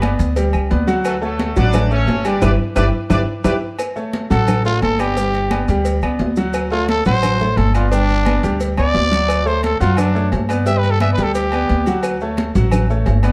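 A brilliant horn section opens this sunny, danceable salsa excerpt in D major at 175 BPM, playing the melody in octaves over a bright, intimate grand piano whose action noise is audible up front. A woody, thumpy upright bass on gut strings sits up front beneath them, while congas, cowbell, agogo bells and timbales, grainy maracas and very quiet claves fill the background. A drum fill and band accent from 2.4 to 3.8 seconds lead into a trumpet solo, with the growling trumpet entering at 4.3 seconds, raspy and punchy with light vibrato. The harmony alternates between G and Dmaj7 chords as the solo unfolds, the trumpet dropping out at 12.0 seconds while piano, bass and percussion carry on. Light reverb and a dark production round out the sound.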